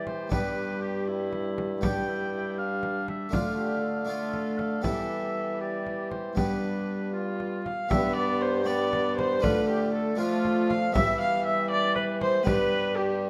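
In a lilting 6/8 at 79 dotted-quarter beats per minute, this renaissance-style consort dance moves with a straight, steady feel that is both rustic and solemn. A deep, large frame drum sits close, dry and up front, struck with hard hands from 0.1 to 12.7 seconds. A clear oboe carries the melody with light vibrato, sounding distant and roomy in the hall. Beneath it, a bowed viola with gut-string tone and a smooth top plays the second line, while another viola, rich and nasal, fills in accompaniment alongside an airy, brilliant harpsichord plucked on three sets of strings. A warm bassoon anchors the bass with light vibrato as the harmony cycles through G, D minor and E minor back to G, with the whole phrase repeating from 7.9 seconds inside a moderate recital-hall reverb, cut from a longer piece.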